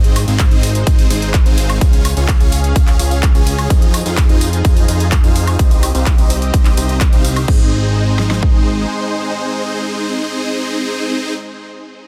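Anthemic and uplifting, this festival progressive house excerpt drives at 127 BPM in Ab major, opening on a drop where huge, bright supersaw chords play a phased riff with digital delay over a slow-attack supersaw pad carrying vintage 12-bit sampler grit, both pumping against the sidechain. A fat, thick analog sawtooth bass holds down the low end until 8.9 s, while an overdriven, layered big-room kit pushes crash, handclaps, hi-hat, tambourine and woodblock, joined from 0.4 s by a punchy kick and a huge snare up front. The cymbals and percussion fall away at 7.6 s, the kick and snare at 8.5 s and the bass at 8.9 s, as the chords cycle through Ab, Db, Fm7 and Cm back to Ab, leaving the lush synths to carry the dense, heavily limited mix to its end at 11.3 s.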